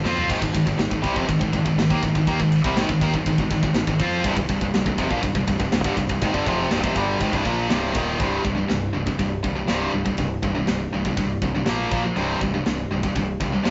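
A scooped, high-gain electric guitar sits up front with a second tight, distorted guitar, both picking a heavy riff in this brief cut from a longer heavy metal piece. The mood is heavy and epic, set in a steady 4/4 with a straight feel. An overdriven, growling fingered bass sits in the background, punchy and direct, while an acoustic drum kit with bright cymbals, a medium-tuned snare and a tight kick opens with a fill and drives the whole passage. The harmony moves from Ab5 to C minor, then shifts at 8.2 seconds into a new section built on C5 and Bb5 power chords. A small, wet room surrounds the rough rehearsal-room sound, whose top end stops below 7.8 kHz, while the drums carry an airy, polished sheen of their own.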